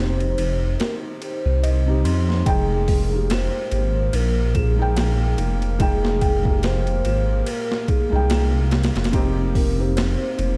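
A dark, warm production with little reverb frames this hypnotic, melancholic trip hop passage in F minor, cut from a longer piece and moving at 72 BPM in 4/4 with a swung sixteenth-note feel. Up front, a deep, rumbling detuned saw bass carries the low end from F1 to F2, while a gritty, pitched-down boom bap sampler-style kit enters at 0.2 seconds with a thumpy kick, high-tuned snare, hi-hat and ride cymbal, overdriven and re-recorded in a large room. A pure, breathy sine lead sings the melody between Ab4 and C5 with vibrato, chorus and dub echo, over a felt-muted upright piano whose soft, intimate accompaniment shimmers with harmonic tremolo. In the background, a nasal analog pad holds sustained chords with chorus, and a delicate, tinkling music box spins arpeggios through tape echo. The harmony rests on Cm/F, shifts to Fm9 at 2.5 seconds, and returns to Cm/F at 9.1 seconds.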